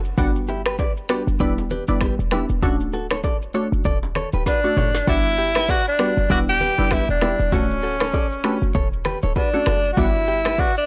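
A breathy, intimate tenor saxophone carries the melody up front from 4.5 seconds, with scooped notes and vibrato through analog delay, over a breezy, romantic afrobeats groove at 98 BPM in D major, swung on the sixteenths. Beneath it, a deep house drum kit with a deep kick and woody snare, a punchy short 808-style bass, a glassy wavetable pluck with chorus, a clean, direct electric guitar riff through its own analog delay, and very quiet congas and bongos move through Gmaj7, Em7 and Dmaj7, with a drum fill leading into the second section at 5.1 seconds. The sound is dry and gritty, cut from a longer piece.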